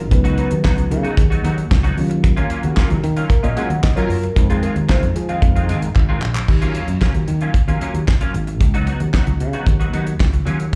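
Slick, funky early-eighties boogie funk, heard as a live club gig through the venue's PA with small-room ambience and club reverb. A round, soft FM electric piano with chorus and slapback echo leads from the start until 5.8 s, joined briefly by a fat, detuned sawtooth synth brass line with vibrato and a filter sweep at 2.6 s. A bright, clean, picked semi-hollow guitar riff, a growly, punchy fingered bass with tube saturation, and a dry, damped 70s kit with a fat snare, tight kick, dark cymbals and handclaps carry the groove, and the drums play a fill at 6.0 s.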